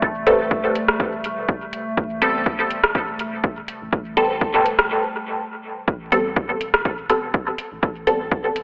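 Dub techno at 123 BPM in A minor, hypnotic and nocturnal, built on an Am9 chord, with a punchy analog kick and a deep house kit of metallic hats and rim clicks sitting up front while a clean, dark sine sub bass pumps quietly underneath. A warbling, lo-fi pad of sustained chords with chorus and sidechain pumping drifts until 5.9 s, as a bright, resonant, detuned dub chord stab, phased and tape-worn, rings through dub echo. After a break from 4.9 s, a filter sweep moves across the stab from 5.9 s, all set in a lush hall reverb with vinyl crackle and a telephone-like tone.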